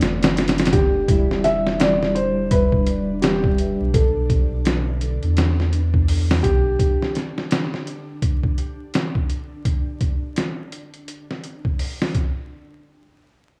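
Hypnotic and brooding, this trip hop excerpt moves at 84 BPM in E minor with a swung sixteenth feel, built on an up-front, gritty sampler-style drum kit with a thumpy kick, a pitched-down sound and a large-room character, under a round, deep dub sub bass that drops out at 6.8 s as the chords give way. A felt-muted upright piano carries the melody with audible action noise and dub echo, while a clean, fingered electric guitar adds tremolo-shaded accompaniment through tape echo and sampler grit until 3.9 s. Behind them a vintage string machine of cellos holds slow-attack sustained chords with phaser and ensemble chorus, all set in a rough home-demo mix with vinyl crackle and small room reverb.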